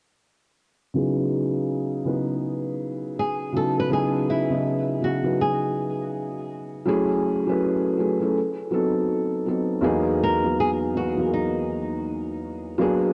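Melancholic and nostalgic, this lo-fi hip hop excerpt in C# minor at 81 BPM sways with a swung 4/4 feel as a dark, thick-felt upright piano, softened by cassette tape and a filter sweep over its opening 3 seconds, lays down chords from C#m11 through F#m9 and B7b9 to Emaj9#11, while from 3.2 seconds a fingerpicked flamenco guitar, warm with audible finger squeak and bathed in diffuse ambient delay, sings a short melody up front in a dreamy mix drenched in wet plate reverb.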